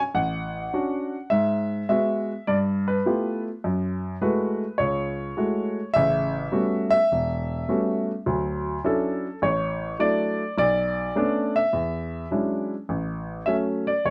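Bathed in light reverb with a soft, rolled-off top end, this brief cut from a longer solo jazz piece sets a woody, polished upright piano up front in the mix. The mood is sophisticated and relaxed, with a swung 4/4 feel and rich extended chords such as Dmaj7, G13, F#m9 and Bm9 drawn from the piano's deep bass to its upper middle register. Near 12.9 seconds the harmony settles on an A6 as a new section begins, and the piano plays on until 14.1 seconds.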